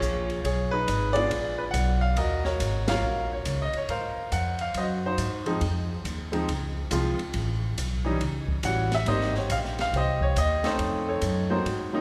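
Playful and sophisticated, this swinging jazz piano trio clip moves at 139 BPM in 4/4, with a clear, intimate baby grand carrying the melody up front, its long sustain and audible action noise adding a natural touch over chords like Ebm7, Ab13 and Dbmaj9. A woody, pizzicato upright bass with steel strings sits close beside it, while a dark, smooth drum kit with a high-tuned snare, boomy kick, hi-hat and ride cymbal stays further back, its top rolled off, until it stops at 11.8 seconds. The whole trio hits a band accent at 2.8 seconds, and a wet church reverb gives the sound the long ring of a large hall.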